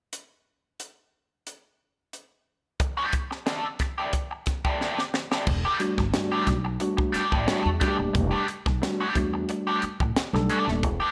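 Funk at 90 BPM in E minor with a funky, hypnotic groove, this excerpt opens on a crisp, airy fusion drum kit with a high-tuned snare and punchy kick, is joined at 2.8 seconds by a bright, crunchy overdriven guitar through wah over an A7sus4, and after a drum fill shifts to Em11 at 5.5 seconds, where a woody, growly pizzicato upright bass enters, followed moments later by stabs from a mellow tine electric piano, all set in light reverb.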